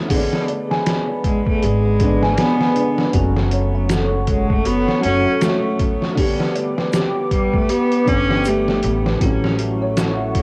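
Dark and hypnotic, this short trip hop excerpt sits on a swung groove from a sampler-style drum kit, pitched down and gritty, with a thumpy kick, a medium-tuned snare and hi-hat, re-recorded in a small room and placed up front. A mellow, woody upright piano plays accompaniment with long sustain, tremolo and tape echo, while a deep, moody analog pad holds slow-attack sawtooth chords thickened by chorus and phaser. In the background, a delicate music box tinkles through arpeggios with vintage 12-bit sampler grit. A single bowed cello enters with the melody at 1.2 seconds, its tone clear and biting with light vibrato. It is followed at 1.6 seconds by a growly, pizzicato upright bass up front, and at 3.9 seconds a faint tube shaker and group handclap join in the distance. The harmony moves from G#dim through F#m and G to A6, all with a cassette home-recording character and a light reverb.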